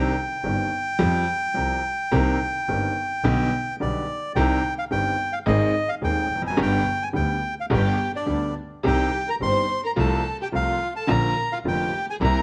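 Close, detailed miking with light reverb frames this tense, melancholic rubato tango fragment in C minor at 107 BPM, where a reedy, boxy bandoneon carries the melody up front over a brilliant upright piano with audible action noise and a focused, bowed double bass sung with vibrato, until a dark, woody, lush studio violin section adds a second line at 7.7 seconds.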